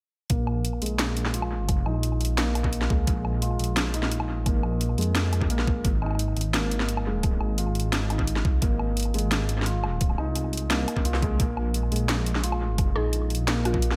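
A half-time groove at 173 BPM in 4/4 drives this heavy, dark drum and bass excerpt, with a knocking, overdriven electronic kick set against an up-front kit of cracking snare, bright hi-hats and woodblock, itself roughened by overdrive and analog delay and re-recorded in a small room. Beneath it, a deep, rumbling detuned saw bass holds the low end with a saturated, beating tone, its fast attack and sustained notes sitting squarely in the foreground. A felt-muted upright piano plays soft, intimate arpeggios through a low-pass filter sweep and dub echo, adding a mellow glow to the shadowy harmony that moves from Bb5 to Ab and back to Bb5. Near the close, at 13.0 seconds, a woody, round synth pluck with a mallet-like, percussive character slips in a brief melodic figure, coloured by subtle chorus, cassette tape grit and dub echo. The mix is echo-heavy with light reverb, and the tuning sits slightly sharp at A4 = 445 Hz.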